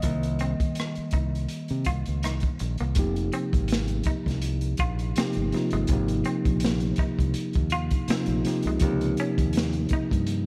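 A dreamy mix soaked in plate reverb gives this excerpt of smooth, late-night neo-soul R&B in F minor a hazy glow, moving at 82 BPM with a light sixteenth-note swing. Up front, a mellow, clean tine electric piano opens with a solo over Cm7 before shifting to Fm11, Ab6 and Db69, while a bright, fingered electric bass and a gritty, saturated breakbeat kit with a tight kick, rim clicks and a rolled-off top hold the groove. A clean, hollow-body electric guitar enters at 0.4 seconds and plays a soft second line, tucked well beneath the other parts.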